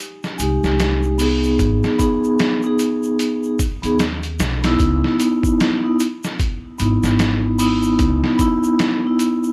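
A swung 75 BPM groove in 4/4 from a muffled, pitched-down sampler-style drum kit with a thumpy kick sits up front in this smoky, brooding trip hop piece, joined by a soft-handed tube shaker, a mellow, band-limited vibraphone with tremolo over rootless Fm7, Abm and, from 4.8 s, rootless Dbm7 chords, and a woody pizzicato upright bass with tube saturation that drops out at 8.2 s, all set in a small, dry room with gritty vinyl crackle.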